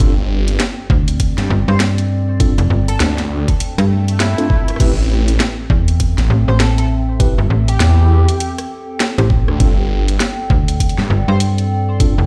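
A swirling, thick detuned saw bass sits up front with phaser and tube saturation, carrying the low end from G1 to G2 in this playful, gritty glitch hop excerpt at 100 BPM in 4/4, swung at 60% on the sixteenths. Beside it, a snappy FM bass with a metallic attack enters at 0.9 s, while an overdriven, pitched-down electronic kick thumps up front and a layered electronic kit adds cracking snare, bright hats, rim clicks and crash, also driven into overdrive. A mellow, clean tine electric piano plays stabs between C4 and C5, pumping against the sidechain and trailing tape echo, over a dark, warbling lo-fi pad with chorus, its own reverb and a slow attack. An edgy, tearing sync lead with vibrato and subtle chorus carries the melody from 1.7 s, and a short electronic swell sounds between 3.7 and 4.8 s. The harmony moves from Gsus4 to Am7 to G9sus4, and the mix stays dry apart from a stone-room ambience that suggests a big sound system in a bare space.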